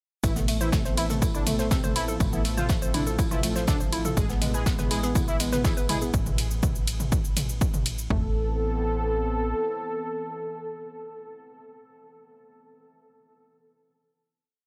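Dark and cinematic, this short melodic techno piece in A harmonic minor runs at 122 BPM, with a brassy, warbling analog synth brass riff in octaves over a pedal note, a smooth pad in the background, a woody wave-folded pluck arpeggio repeating a 16-step sequence, and a tight, driving sequencer bass holding the root, all pumping with sidechain. An overdriven house kit pushes a punchy four-on-the-floor kick up front, joined by an analog drum machine's shaker, ride and half-open hats and a looped, rolled-off soul breakbeat in the background that drops out at 6.0 s, all set in digital ambience. The drums fall away near 8.1 s as the final Amadd9 chord arrives, and the bass carries on until 9.5 s, leaving the brass and pad to ring out on that chord.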